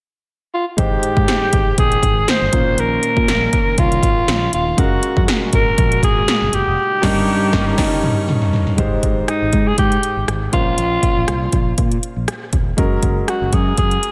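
Lightly swung 16ths in 4/4 drive this glossy, uplifting 1980s-style pop fragment, where punchy electronic pad drums with a gated snare, metallic hats and gated-reverb toms sit up front beside a raspy, growling alto saxophone melody, while a polished concert grand piano with slapback echo, a round, dark fretless electric bass and a shimmering chorused pulse-width pad that drops out at 8.8 s fill out the harmony, all bathed in a lush hall reverb for a big arena sound, with a drum fill and band accent from 6.8 s.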